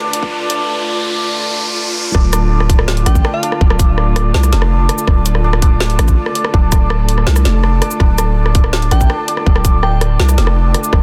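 Half-time drum and bass at 164 BPM in D dorian, cinematic and heavy, this excerpt from a longer piece opens with a build-up where an electronic riser and a filter sweep on a bright, shimmering santur arpeggio with delay sit over dark, veiled con sordino strings holding sustained chords with sidechain pumping, while a tight, up-front electronic kick and a small-room kit of woody, soft-clipped snare, bright hats, rim clicks and shaker enter almost at once. At 2.1 seconds the drop lands with a growling, buzzy 808-style bass. A glassy FM synth bell with chorus, tremolo and delay flickers in the background at 3.1 and 8.9 seconds, all within a dry, dense, heavily limited modern master.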